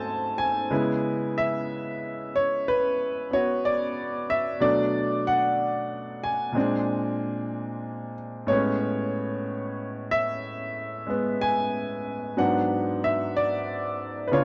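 A slow swing at 62 BPM in 4/4 gives this solo jazz piano piece an unhurried, lilting pulse, with the eighth notes played in a relaxed swung feel. A single grand piano carries everything, ranging from G#2 up to A5 with a bright, brilliant, up-front tone. The recording feels intimate and close, in the manner of a dry 1970s studio, with only a light touch of reverb and the natural sound of the instrument's action audible beneath the notes. The harmony moves through rich jazz colours, opening on G#7b9 and settling into C#m7, then passing through Bm7 and Bb9 before arriving at Amaj9 around 8.5 seconds and turning to G#m7b5 at 12.4 seconds. The mood is swinging and warm, a short passage lifted from a longer performance that ends at 14.4 seconds.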